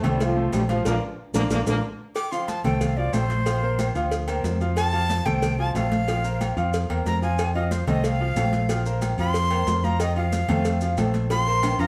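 Sunny and danceable, this salsa excerpt in F major moves at 184 BPM, opening with a tight, up-front trombone section carrying the melody until 1.7 seconds through a band accent and drum fill. A breathy, bright jazz flute with vibrato and a crisp, chiffy attack then takes a solo from 2.2 seconds, backed by polished baby grand piano chords moving between F and Bb harmonies and a round, punchy fingered electric bass. Thin-skinned congas, a high-tuned cowbell and ringing agogo bells and timbales sit in the background alongside grainy maracas, and the whole band is heard from further back in a wet studio room.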